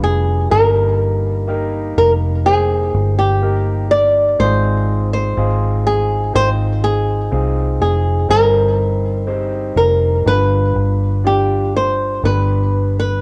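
A heartbroken pop ballad at a slow 62 BPM in 4/4, this short cut from a longer piece features a fingerpicked flamenco guitar carrying the melody up front, over a concert grand piano that adds deep bass and a cassette-tape coloring. A dark, foam-muted, punchy fingered electric bass sits close in the mix beneath the chords, which move through G7, Eb, Fm7/Ab and Cm/G before settling on G. Light studio reverb and a homespun cassette recording give the whole a warm, emotional feel.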